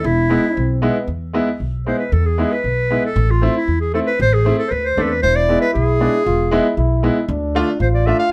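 Klezmer, festive and soulful, cut from a longer piece: a clear, soft-attacked clarinet carries the melody in a classical style and takes a solo from 1.1 s, a mellow, breathy trombone with vibrato plays a jazz-inflected second line at the start and returns at 5.2 s, a bright, woody upright piano supplies accompaniment up front, and a dark, thumpy pizzicato upright bass anchors the low end, all set in light reverb.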